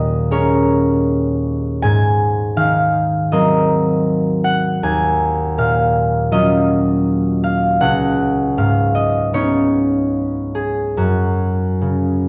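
A dark production with a faint mains hum and a moderate recital-hall reverb frames this graceful, peaceful classical solo harp passage, cut from a longer piece, in which a bright, ringing, fingerpicked concert harp sits up front and moves with rubato in 4/4 at roughly 69-83 BPM through lush extended chords such as A#m7/D#, G#9 and D#m11 before settling on F#5 at 11.0 seconds.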